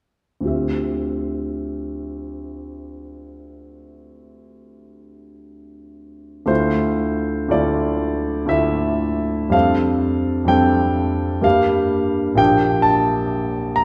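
Hazy and wistful, this short passage from a longer impressionist solo piano piece drifts in 3/4 at a free, rubato 51-66 BPM in D minor, its harmonies moving from Dm11 through Dmadd9 to F69, Gm7 and Bb6. A clear, intimate grand piano plays alone from 0.4 to 13.8 seconds, spanning Bb1 to Bb5, with the noise of its action audible and a natural, up-front presence. The piano sits in a recital hall's wet reverb, heard from further back in the room, and the passage shifts to a new section at 6.5 seconds.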